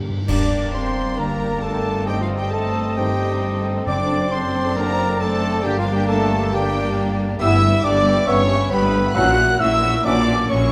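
A soft-mallet timpani fill, warm French horn chords and a very quiet, ringing harp open this stormy, restless fragment of a fast, rubato romantic symphonic movement in G minor at 135 BPM. Intense, lush violins take the melody over rich double basses at 0.1 s, before bright clash cymbals and concert bass drum mark a full-orchestra accent at 0.3 s and smooth cellos join in the background. Meanwhile a second, very quiet violin section, a clear oboe, a dark clarinet, a hollow flute, focused violas, a bassoon, distant trombones and mellow trumpet stabs fill out the dramatic texture, the timpani returning at 3.9 s within a moderate scoring-stage reverb.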